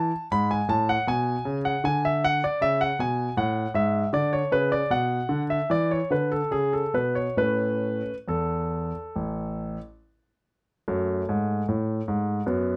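A flowing, serene baroque-style suite movement for solo concert grand piano, cut from a longer piece, unfolds in 4/4 with a rubato feel, its intimate, polished tone sitting up front with deep bass, long sustain and audible action noise under light reverb as the harmony moves through Bm69, A, Bm and E5 before turning to F#m at 10.9 seconds.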